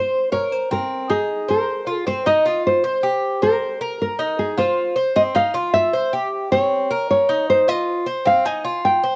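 A cassette-taped home recording in a small, damp-sounding booth with plate reverb gives this sultry Latin excerpt in F minor at 155 BPM a hazy intimacy. Up front, a full-bodied, fingerpicked classical nylon-string guitar carries the melody with audible finger squeak, while a metallic Cuban tres with doubled, partly octave-strung courses picks arpeggios beneath it. At 2.1 seconds the passage moves into a new section that drifts through open fifths, suspended chords and minor sevenths.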